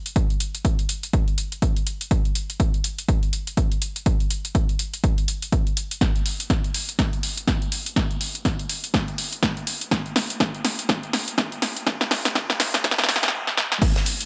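House at 123 BPM with a swung sixteenth feel, this euphoric, feel-good cut from a longer piece sets a punchy, tape-warmed electronic kick under an up-front, layered house kit of crash, snare and hats, then from 6.0 s builds with drum fills and a filter sweep into a brief stop at 13.3 s, before a background acoustic soul kit of pumping hi-hat and medium-tuned snare, warm with a rolled-off top, enters at 13.8 s.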